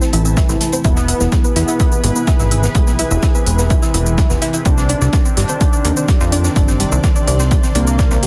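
Smooth, layered electronic shaker and hi-hats that pump with sidechain open this melodic techno excerpt at 126 BPM in a straight 4/4, while a muffled, gritty cloth-damped kit of hi-hat and fat snare sits in the background with small room ambience, before a punchy, up-front electronic kick enters at 0.4 seconds to drive it. Underneath, a funky, plucky analog bass built from sawtooth and pulse waves snaps forward with a fast attack, pumping against the kick. The mood is cinematic and driving, moving from Am to E at 0.8 seconds and on to Cmadd9 at 4.7 seconds. A mellow, brassy synth lead carries the melody with detuned sawtooth and square layers, a sub octave, vibrato, chorus and dub echo, while a soft, round pluck plays arpeggios through chorus and digital delay. Behind them, a lush, thick unison pad holds sustained chords, an ethereal, airy pad adds full-bodied wave-folded texture with ensemble chorus and built-in reverb, and a very quiet, warbling vintage drone on C3 enters at 0.6 seconds. 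The dense, heavily limited modern master wraps it all in digital ambience, with the playing in a tuning of A4 = 435 Hz.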